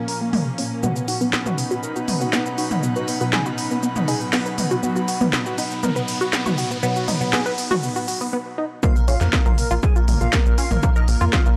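Straight 4/4 at 120 BPM drives this dark melodic techno passage: a tape-warm techno drum kit with cracking snare and smooth hats, a detuned tight sequenced synth arpeggio and a muted, deep filtered dub chord stab, both filter-swept through the build-up, support a nasal, expressive synth lead, a morphing wavetable pad and a breathy background pad, while an electronic riser from 3.8 s leads to the drop at 8.8 s. The drop brings in a punchy electronic kick and an airy, dreamy second lead, followed at 9.1 s by a sawtooth tight sequencer bass, with sidechain pumping on the pads, stab, arpeggio, bass and dreamy lead in a dry, gritty mix.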